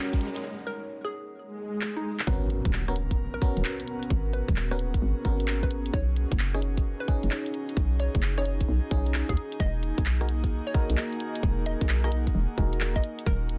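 A dense, heavily limited mix with light reverb carries this skippy, moody two-step UK garage excerpt at 131 BPM in G# minor, where an electronic riser, swell and impact build to the drop at 2.3 seconds, as a tight, up-front layered kick and a swung garage kit of handclaps, hi-hat and rim click drive under a hollow, punchy FM bass, glassy bell-like FM electric piano stabs with chorus and digital delay, a detuned, wave-folded square pluck melody through tape echo, an airy, breathy pad on sustained chords, and a deep, dark ambient pad pumping in the background over chords moving from G#m11 through B69 to Emaj9#11.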